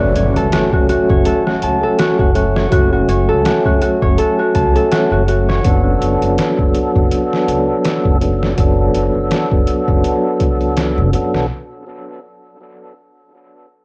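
Brooding and hypnotic, this trip hop excerpt moves at 82 BPM with a swung 16th feel, sitting on F#m until 11.5 s and tuned slightly flat of standard pitch. An up-front tonewheel organ, fat and lightly overdriven with key click, slow rotary speaker, chorus vibrato and tape echo, carries the accompaniment beside a growly pizzicato upright bass, while a mellow, ringing Celtic harp plays fingerpicked arpeggios until 7.7 s. An electronic impact lurks in the background for the opening 2.7 seconds, and from 0.2 s a gritty, pitched-down, tape-warm sampler drum kit with a thumpy kick, hi-hat and medium-tuned snare drives the home-cassette sound, with light reverb.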